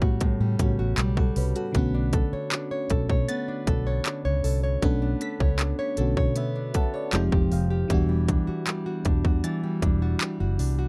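Late-night and sensual, this contemporary R&B excerpt moves at an unhurried 78 BPM in B minor with a straight 4/4 feel. An electronic trap drum kit sits up front, its hard-clipped kick, crisp hi-hats and handclaps roughened by overdrive, while a vintage muted fingered electric bass, dark, round and foam-muted, anchors the low end alongside it. An FM electric piano with a bell-like attack and full-bodied, mellow decay carries the chords through chorus, adding a brief fill between 6.4 and 7.9 seconds, as a small, bright fingerpicked nylon-string guitar plays arpeggios through delay. From 3.3 seconds a crystalline wavetable pluck enters high in the background, detuned and evolving with a filter sweep, chorus and delay. The harmony drifts from A13 to Bm9, then to Fm9 and Em9 near the end, all set in a dark production with little reverb.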